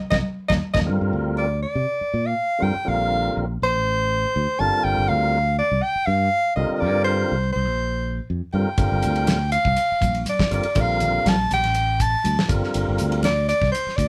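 A breathy, close-miked soprano saxophone carries the melody up front in this slick, soaring electric jazz fusion excerpt, ranging from C5 to A5 at 121 BPM in a straight 4/4. Beneath it, a lightly overdriven tonewheel organ with a fast rotary speaker supplies the accompaniment and plays a fill during the opening band accent. A growly, bright fingered electric bass sits up front from start to finish. The dry, damped 70s drum kit, with its fat snare and tight kick, opens with a fill alongside thick-skinned congas in the background; both then drop out at 0.9 seconds and return at 8.8 seconds. The harmony moves through Gm7, Bbmaj9 and Csus2, tuned to A4 = 438 Hz, and the band plays live in one room with moderate studio ambience.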